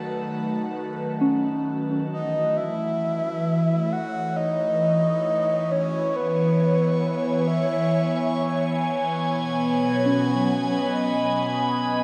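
A dark, wet hall sound surrounds this serene, melancholic ambient fragment in F# dorian, moving slowly at 68 BPM in a straight 4/4. An airy, detuned pad sits up front throughout, holding sustained chords through B7, F#m7, C#m7 and G#m7/B, colored by chorus, phaser and shimmer reverb. At the opening, a very quiet, nasal string-like drone with vibrato shares the space with a drifting, glassy texture of high overtones, and both drop out around the time a breathy, flute-like synth lead takes the melody at 2.1 seconds. Entering at 1.2 seconds, a pure FM bell plays mellow arpeggios in the background, gradually fading in under chorus, shimmer and a diffuse ambient delay. The lead sings with vibrato until 8.8 seconds, after which the glassy texture returns at 9.2 seconds to close this section cut from a longer piece.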